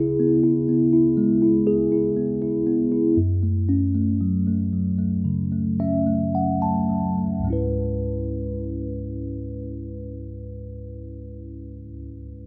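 The pulse is a straight, unhurried 4/4 that slows down over the first 7.5 seconds, giving this short pop cut from a longer piece a hesitant, emotional feel. A single tine electric piano carries the whole accompaniment, its mellow, clean tone sitting direct and up front while a phaser colours the sound. Its range stretches from deep bass notes up into the high register. A piano fill from 5.3 seconds leads into a new section at 7.5 seconds, where the opening chord returns, and the instrument plays on until 12.5 seconds. A moderate plate reverb with a long tail surrounds the rough home demo mix, deepening its longing mood.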